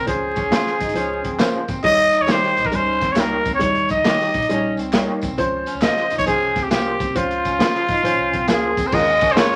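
A raspy, growling trumpet melody opens this joyful, danceable 1960s-style soul excerpt together with a twangy guitar riff bathed in spring reverb and a round, foam-muted picked bass, before a dark, woody, slightly detuned upright piano and a crunchy, saturated breakbeat kit with a punchy kick join at 0.1 s, very quiet tambourine and handclaps follow at 0.4 s, and a second broken-up guitar adds tremolo stabs from 0.5 s, the groove swinging at 136 BPM in Eb mixolydian inside a small, wet room dusted with vinyl crackle.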